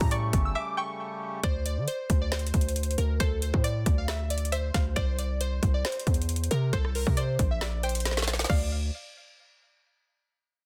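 A dense, heavily limited modern master set in digital ambience carries this brooding, hard-hitting trap excerpt at 136 BPM in a half-time feel, moving from A7 to D5 and then Cadd9. Glassy, detuned digital keys with chorus and a low-pass filter carry the melody over a twangy, bright resonator pluck with delay, while a reedy, breathing harmonium holds chords only until 1.4 s. Up front, a punchy 808-style bass with a noise layer anchors an electronic kit of hard-clipped kick, woody soft-clipped snare, metallic hats, rim clicks and crash, with a break from 0.6 s and a drum fill at 8.1 s.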